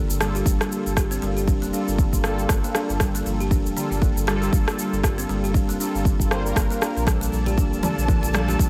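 Afro house at 118 BPM in G minor, this short excerpt from a longer piece has a driving, warm feel, with a 16th-note swing and a single Gm9 chord throughout. A buzzing kalimba with a woody, ringing thumbnail pluck spins arpeggios from the start, its sidechain pumping and digital delay shared with mellow synth brass stabs, which are detuned, dark and sawtooth-edged, with chorus, phaser and a filter sweep. Underneath, a round sine sub bass holds the low end with sidechain pumping, while tape-tinged electronic shaker and rim click enter at 0.1 seconds, and a layered, punchy kick drum sits up front from 0.5 seconds. At 7.1 seconds a lush, bowed studio string section adds sustained chords with expressive vibrato and a smooth top, along with very quiet, close and dry congas with a thick skin. The whole is set in a small room ambience.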